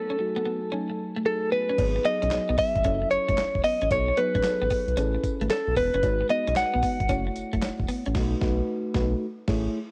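A direct-recorded clean electric guitar carries the melody up front with tremolo and cassette-tape color, joined from the start by a mellow, full-bodied FM electric piano with chorus and a clean picked guitar riff drenched in lush chorus, before a round, deep analog bass, a gritty sampler-style drum kit with thumpy kick, handclaps and tambourine, and a very quiet metallic cowbell arrive at 1.8 seconds in this confident, slick new jack swing cut at 113 BPM in F# dorian, swung 16ths riding a dry home-cassette sound over jazzy seventh chords toward a band accent at 8.2 seconds.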